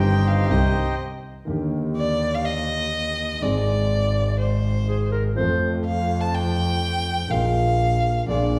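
Passionate and melancholic, this short cut from a longer tango in Eb major moves at 124 BPM with a rubato feel. A reedy, band-limited bandoneon states the melody only for the first second before a brief stop, after which the violin carries a solo from 1.5 seconds to the end, its bowed line full of vibrato, portamento and a soft attack. Beneath it, a concert grand piano with audible action noise and deep bass supplies the accompaniment, while a close, biting, earthy double bass, bowed by one player, sits up front in the low register. A distant, roomy clarinet slips in with a brief second line between 4.9 and 5.7 seconds. The harmony moves from Cm through Ebmaj7, Ab and F to a closing Bb7sus4, all wrapped in a wet recital hall reverb that gives the ensemble the air of a church or concert hall.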